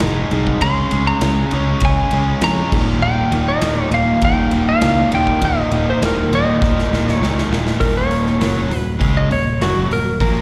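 A swaggering, driving classic rock excerpt opens with a twangy, clean lap steel melody and a dark, double-tracked overdriven guitar riff up front, both carrying slapback echo, over a growly, punchy picked bass and a big acoustic drum kit with bright cymbals and a boomy kick, the band heard as a live gig through the venue's PA with recital hall reverb, until a drum fill at 6.6 seconds leads into a slide guitar solo at 7.8 seconds.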